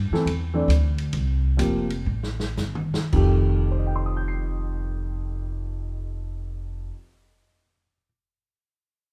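A light reverb frames this short cut from a relaxed, playful jazz piano trio in F mixolydian, swinging in 4/4 somewhere between 104 and 146 BPM and slowing down through its opening bars over Am7 and Csus4 before settling on F9. An up-front upright piano with a woody, natural tone carries the melody across a broad range, while a pizzicato upright bass with steel strings and a warm, close presence holds down the low end. A small-room acoustic drum kit with dark cymbals, a medium-tuned snare and a boomy kick plays a fill from 2.1 to 3.1 seconds and drops out at 3.3 seconds, leaving bass and piano to carry on.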